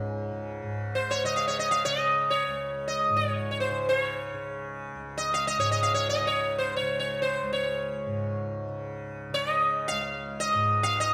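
Closely and intimately recorded in a moderately reverberant stage space, this brief cut from a longer meditative, devotional Hindustani classical piece in free time features a bright, plectrum-plucked sitar up front, its buzzing tone and sympathetic strings carrying the melody with a touch of slapback echo, over a warm, softly plucked, shimmering tanpura drone.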